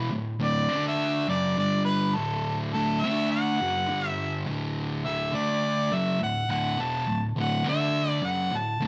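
Light reverb gives this swaggering, rowdy rock excerpt a touch of space, with both parts placed up front at a straight 104 BPM in 4/4, in D major tuned to A4 = 441 Hz. A dark, double-tracked fuzz guitar plays a picked, distorted riff low in the register over D and G5 chords, while a vintage-sounding harmonica with overdrive carries the solo melody from 0.0 to 8.8 seconds. The harmonica's punchy, pop-style lines are marked by vibrato and scooped notes.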